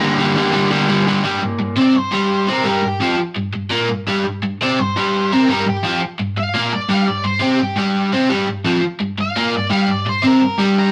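A straight 4/4 pulse drives this gritty, raw rock excerpt at 170 BPM in G minor, settled on a G minor chord from the start. An overdriven electric guitar carries the riff from 0.0 to 10.9 seconds, picked and double-tracked, sitting up front in the mix with a warm, overdriven edge. Over it, an octave-fuzz lead guitar plays the melody, its distorted, dark tone ranging from G4 to Bb5 and set lower in level than the riff. At 1.2 seconds the lead breaks into a solo that runs to the end at 10.9 seconds. The rough rehearsal-room sound is wrapped in a moderate studio reverb, giving the whole take a loose, unpolished feel.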